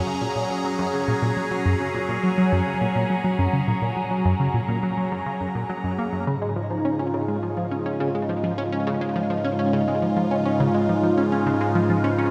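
A tight, driving sequenced synth riff sits up front in this hypnotic stretch of ambient space music, its detuned blend of sawtooth and square waves shaped with a fast filter pluck and coloured by chorus, phaser, tape echo and shimmer reverb. Beside it, a phased analog pad holds sustained chords, its bright, swirling voice evolving with a soft attack and long release through phaser, chorus and its own shimmer reverb. The harmony rests on F# before moving to C#7 over G# at 6.3 seconds. At that same moment a barely audible bubbling texture joins, a mellow, resonant layer of random filter steps carrying its own built-in reverb. A wet scoring-stage room lends the music an expansive depth, and this passage, cut from a longer piece, runs to 12.3 seconds.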